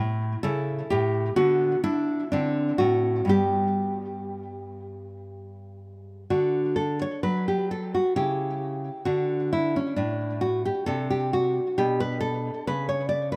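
In a lilting triple metre with a flexible, rubato pulse, this short classical passage unfolds as a serene baroque-style dance for solo nylon-string guitar. The guitar is fingerpicked and sits up front, its full-bodied, deep classical tone captured by close, detailed microphones and touched by a tape echo and light reverb. The first phrase moves through A7/C#, D69 and D7 before settling on G, and at 6.3 seconds the music restates its opening idea with a shift toward a new tonal centre. This second phrase passes through C#dim, D5 and D7/C to close on a Bm9 chord. Ranging from low bass notes up into the upper register, the playing keeps a serene, dance-like grace as the fragment, cut from a longer piece, ends at 13.4 seconds.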